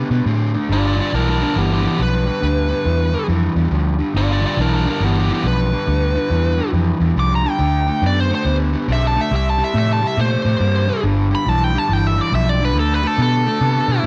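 An overdriven semi-hollow guitar opens this rollicking, swaggering electric blues shuffle at 139 BPM in G mixolydian, its picked riff sounding hollow and up front, with a vintage muted fingered electric bass joining at 0.1 seconds in a dark, round, punchy tone. From 0.7 seconds a smooth overdriven lead guitar plays the melody high above them, bright and picked, carrying a guitar solo through this section cut from a longer piece. The swung eighths give the groove its strut as the harmony moves from G7 to D7 at 7.6 seconds, then through C5 and back to G7 before settling on D5. The foam-muted bass sits slightly forward of the two guitars, anchoring the low end beneath the riff. A light reverb frames the trio.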